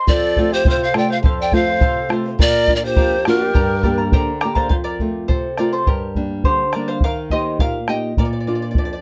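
Closely miked with light reverb, this earthy, melancholic Andean folk excerpt in a straight 2/4 opens with the shimmering, double-strung charango, joined at once by an airy bamboo pan flute carrying the vibrato-laden melody up front over a breathy, end-blown large quena's second line, both winds stopping at 4.1 seconds as the charango takes a solo from 4.7 seconds above a small fingerpicked nylon-string guitar and a deep, dry bombo, moving through F, Bb, Gm and Eb chords.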